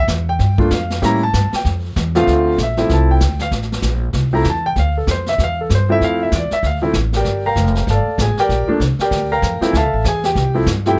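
This excerpt opens on an up-front concert grand piano, its deep bass and warm tone carrying the accompaniment in a smoky, moody piece of small-group swing and bop in D minor. The tempo sits at a brisk 193 BPM in 4/4 with a swung eighth-note feel. A woody, plucked upright bass on steel strings holds the low end from the start, also placed close and present. A jazz kit played with brushes joins at 0.1 seconds, its brushed snare, hi-hat and boomy kick sitting farther back in a natural studio room. The harmony moves from Gm9 and A7b9 into a long stretch of Dm9 from 2.3 seconds, returns to Gm9, then settles on a rootless Dm9 at 9.7 seconds, all under a light reverb.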